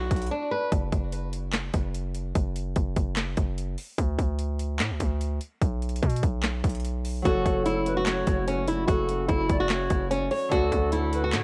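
A half-time trap groove at 147 BPM in F# minor drives this brooding, menacing hip hop piece. An overdriven drum kit of hard-clipped kick, sharp snare, metallic hats and handclaps sits up front over a saturated, heavy distorted 808 bass that runs throughout. A fingerpicked flamenco guitar with delay and audible finger squeak opens briefly and falls away into a short silent gap, then returns at 7.3 seconds as the second section brings in a distant, pure pan flute with vibrato and delay, a ringing Celtic harp in the background and a very quiet, hollow pad of sustained chords, all heard through a worn, warbling cassette-tape sound with little reverb and drifting pitch.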